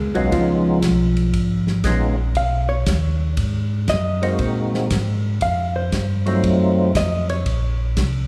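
A clean, compressed hollow-body jazz guitar takes a solo from the first second over a mellow, round tonewheel organ bass line with key click and a slow rotary speaker, joined by a dry soul drum kit with a tight kick and dark cymbals and a fat, percussive second organ carrying the melody through chorus vibrato, in this greasy, soulful soul jazz organ trio excerpt that moves through Db9, Ab9, F7b9 and Bbm inside a wet recital-hall reverb.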